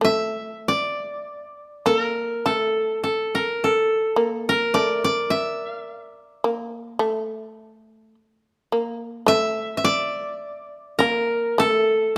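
Close, detailed microphones capture this 12.2-second fragment of Japanese chamber music inside a recital hall whose reverberant tail lingers for about 1.4 seconds. The mood is still and meditative, moving at a slow 52 BPM in 4/4 with a freely breathing rubato feel. The koto carries the melody between A4 and E5, its fingerpicked tone bright and woody as it sits up front. Beneath it, the fretless shamisen holds a second line between A3 and Bb3, plucked with a plectrum to give a warm tone with a percussive, buzzing attack. Both instruments play throughout the short passage, which is lifted from a longer piece.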